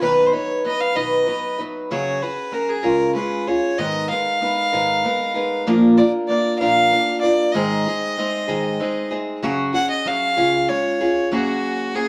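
Acoustic folk in 6/8 at 64 BPM, this hopeful, nostalgic excerpt features a nasal, reedy fiddle carrying the melody as a bowed solo up front, over a dark, woody picked ladder-braced acoustic guitar with old strings, both captured live in one room with wet studio reverb as the chords move from B through C#sus4 and G#madd9 to settle on F#add9 at 11.3 seconds.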